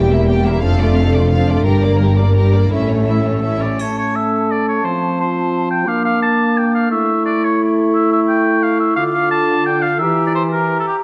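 Swashbuckling and determined, this excerpt from a heroic adventure film score moves at 116 BPM in a straight 6/8. For the first 3.8 seconds a lush, full-bodied string body builds up: rich violins carry the melody over a second violin line, while violas, cellos and woody double basses fill in the accompaniment and bass, all bowed with vibrato. A dark, distant French horn section sustains chords up front through the whole passage, to 10.9 seconds. Around the 3.8 second mark the strings fall away and the woodwinds take over: a clear, vintage-toned oboe entering at 3.1 seconds, a present clarinet, and an airy, hollow flute each carry second lines, while a bright triangle sparkles briefly. The harmony moves through minor and diminished colors, landing on D minor before turning back to E diminished. A wet scoring stage reverb gives the dark, warm production its sense of space.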